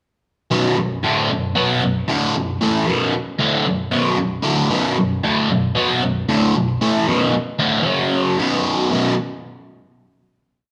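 A cranked stack guitar carries this short, anthemic rock piece alone, its bright, overdriven, double-tracked tone sitting up front with a phaser coloring the picked power-chord riff. The straight riff moves from a B5 chord to F#5 at 7.9 seconds and back to B5, landing on a final chord at 8.9 seconds that rings into a wet, large-room reverb. The sound has the powerful, live feel of a band playing together in one studio.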